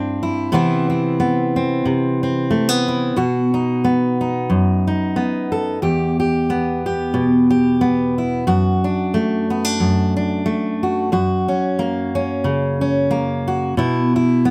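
A full-bodied jumbo steel-string acoustic guitar, fingerpicked and up front with audible finger squeak, plays alone through this haunting, wistful folk excerpt, its lightly swung lines moving over chords from Cadd9 through Em and F# to a closing Bsus4, captured by close, detailed microphones in light reverb.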